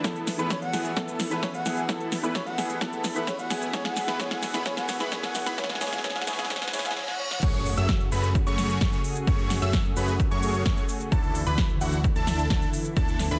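Festival progressive house in F# minor at 130 BPM, this powerful, emotional passage moves from a build-up into a drop at 7.4 seconds, with chords shifting from Esus4 and C#m7/E to F#madd9 and Dsus2. A punchy, overdriven electronic kick sits up front alongside a big-room dance kit of crisp hats, shaker, crash and a punchy snare, with drum fills running through the build-up, while a fat, detuned sawtooth bass pumps against the kick in the background. Huge detuned supersaw chords carry the riff with a moving notch and dub echo, a thick, bold unison lead spins high arpeggios with vibrato and a sub octave, and a barely audible warbling vintage pad holds sustained chords underneath. During the build-up a soft, intimate felt-muted upright piano with audible action noise plays accompaniment until 7.5 seconds, and a breathy, flute-like synth lead with lush chorus and dub echo sings a short melody. 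Filter sweeps, a riser and a reverse cymbal lead into the drop, where an impact lands, all set in light reverb under a dense, heavily limited modern master.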